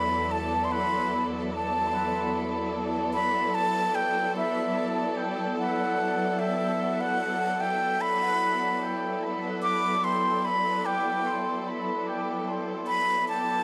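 A breathy concert flute carries the melody from E5 to D6, its straight tone and soft attack close-miked and up front, trailed by a dub echo. Beneath it a rich, bowed string section holds sustained chords with vibrato, moving from D/E to E7(no3) at 3.1 seconds. This meditative, hazy ambient fragment at 74 BPM sits in a dark production with spring reverb and vinyl crackle.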